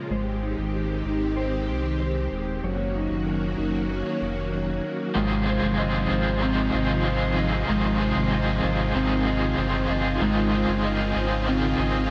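A crunchy, overdriven electric guitar with picked attack arrives at 5.1 seconds, bright and up front, its accompaniment shimmering through tremolo and lush chorus as the second section begins. This dreamy, blissful dream pop fragment, cut from a longer piece in a straight 4/4, opens on a vintage string machine voiced as violas, whose sawtooth chords sustain with a soft attack and a warbling ensemble chorus. Beside it, a dark, clean electric guitar plays fingered, compressed arpeggios coloured by analog chorus and tape echo. Underneath, a deep sub bass doubled at the octave holds sine-like, sustained notes with a fast attack. The harmony drifts from Abmaj7 to Gb6, then settles on Ab6 before opening onto Dbmaj9 at 10.2 seconds. A huge ambient reverb with a long tail bathes the mix in a hazy glow.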